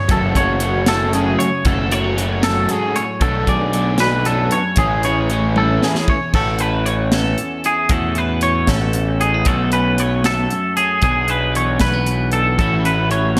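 Intricate and wistful, this math rock and midwest emo piece moves at 77 BPM in a straight 6/8 in A major, drifting through jazzy chords like F#m7, Bm9 and Amaj7 in a dreamy mix soaked in plate reverb. A clean, compressed, twangy electric guitar spins lush-chorused arpeggios up front over a scooped, slightly broken-up guitar accompaniment. A punchy fuzz bass and a crisp, airy fusion kit with a high-tuned snare drive underneath, while a bright, double-tracked overdriven guitar riff drops out during a drum fill around 6 seconds and returns at 12.6 seconds.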